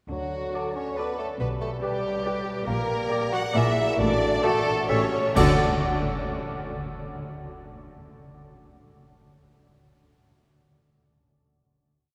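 Cinematic, whimsical film cue in 3/4, mischievous and playful, where a close, expressive chamber violin section and a very quiet, distant studio violin section double the tune at the octave over a mellow bassoon line, soft-edged French horn chords in the background, and a dark, woody double bass section paired with a lush cello section on the bass. At 0.5 s a very quiet studio viola section adds pizzicato and sustained chords, while a hollow flute section, a clear, distant oboe and a roomy solo clarinet supply after-beat and sustained chords. From 2.7 s, cymbal swells, dark crashes and close, dry bass drum strokes lead into an accented final chord at 5.4 s, all bathed in a long, wet cathedral reverb.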